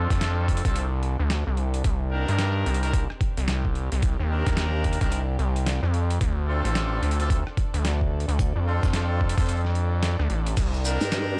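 The recording has a dry, gritty hardware character with transformer saturation, cassette-tape grain and a small room ambience. This short glitch hop excerpt at 110 BPM in 4/4, swung on the sixteenths, has a swaggering, gritty mood over chords moving between Dm7 and Cm7. A sawtooth-edged driven synth bass sits up front with a plucky, aggressive, evolving tone, joined by a thumpy, pitched-down electronic kick and a sampler-style boom bap kit of crash, hi-hat, rim click and a medium-tuned snare, both overdriven and treated with studio reverb. Tight horn stabs with light vibrato carry sidechain pumping, a low-pass filter and analog delay, while a very quiet chamber string section adds a dark, bowed sul tasto texture beneath. Near the close, a grainy, mellow shekere enters at 10.6 seconds, and at 11.0 seconds a nasal, resonant vowel-sweep wobble bass with chorus takes over the low end on a single G2.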